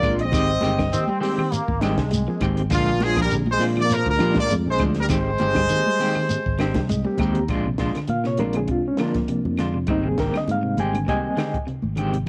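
A brilliant, punchy horn section carries the melody up front with a cassette-tape tint, backed by a clear trombone on a second line in the background, and both stop at 6.9 seconds. This is a hypnotic, funky afrobeat excerpt at 100 BPM in 4/4, with a light swing on the sixteenths, moving between Abmaj7 and Bb7. Underneath, an overdriven, gritty reed electric piano with fast tremolo plays accompaniment through a combo amp, then takes a fill from 6.6 seconds and a solo from 7.5 seconds to the end. Two slightly broken-up electric guitars fill out the middle: a bright, twangy picked one plays arpeggios in the background, while a dark, fingered one adds stabs with tremolo, and a muted trombone section with a nasal straight-mute tone briefly joins on a second line near the start. A growly, bright fingered electric bass anchors the groove with a compact cocktail drum kit featuring a high-tuned snare and punchy kick, which plays a fill just before the solo. 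Woody claves, soft-handed damped congas and a grainy shekere, which stops at 7.4 seconds, add close, dry percussion, all set in studio reverb with a home cassette character.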